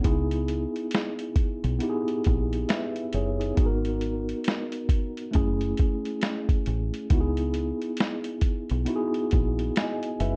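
A lazy swung sixteenth-note groove in 4/4 runs through this short lo-fi hip hop fragment, with a compressed, pitched-down sampler-style drum kit laying a thumpy kick, a muffled medium-tuned snare and hi-hat up front. A round, foam-muted fingered electric bass sits deep beneath, while a mellow tine electric piano, softened by cassette tape and a low-pass filter, moves through C#m7, G#m7 and F#m7 before returning to C#m7 at 7.1 seconds. The dark, dry production gives the whole clip a melancholic, nostalgic mood.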